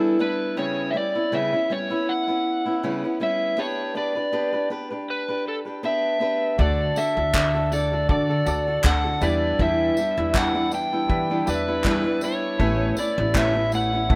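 Acoustic pop with a carefree, sunny mood and a gently swung feel, where a dark, overdriven electric slide guitar sings the melody up front over a fingerpicked steel-string acoustic guitar with audible finger squeak, and at 6.6 seconds a clear concert grand piano enters in the background alongside a woody pizzicato upright bass and an unplugged kit played with bundle sticks, featuring a punchy kick, handclaps and tambourine, all in a light reverb.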